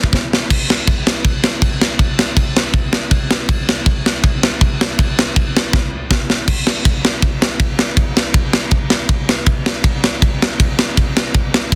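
Rebellious and upbeat, this short cut from a longer punk piece runs at 160 BPM in a straight 4/4. A tight, acoustic metal drum kit carries the whole recording, built from kick drum, snare, crash cymbal and ride cymbal. The kit sits up front with a mid-forward, big-room character, a medium-tuned snare and a tight kick that carries a touch of soft clipping, while its top end is rolled off. A brief drum fill kicks things off at 0.1 seconds, and another fill from 5.7 seconds leads into a new section at 6.5 seconds. The sound is dry, with little reverb, and the master is dense and heavily limited in a modern style.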